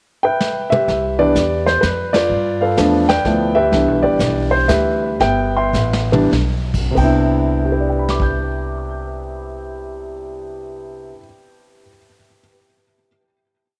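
A grand piano opens this swinging, sophisticated jazz waltz in C major, its intimate, up-front tone carrying audible action noise, deep bass and long sustain, with tape echo on its hook-like motifs and syncopated, rootless comping. Brushed drums with sweeps on the snare, a punchy kick and a rolled-off top enter with a short fill, and a woody, growly pizzicato upright bass starts walking at 0.9 s. The trio hits an accent together at 2.1 s and gradually slows, and the drums stop at 8.3 s as piano and bass hold the closing Cmaj9 chord in a small, lightly reverberant room.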